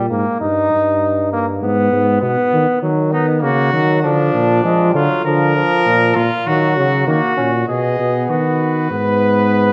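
Serious and contemplative, this short cut from a longer imitative canzona for brass ensemble moves at 99 BPM in straight 4/4, opening with a brilliant, distant trombone carrying the accompaniment over a warm bass trombone. A trumpet with a soft attack and smooth top enters on a second line at 3.1 seconds, and another, roomy trumpet takes the melody at 7.7 seconds as the harmony arrives on B. The whole ensemble sits in a wet recital-hall reverb.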